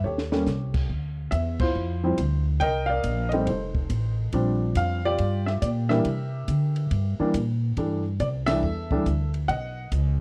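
An intimate baby grand piano with audible action noise and short sustain carries the melody in this relaxed, swinging jazz piano trio passage at 140 BPM, over a woody, thumpy pizzicato upright bass on gut strings and a dark, smooth cocktail drum kit with a high-tuned snare and punchy kick that opens with a fill, with band accents at 1.5 and 8.4 seconds, all captured in a dry, close 1970s-style small-room recording.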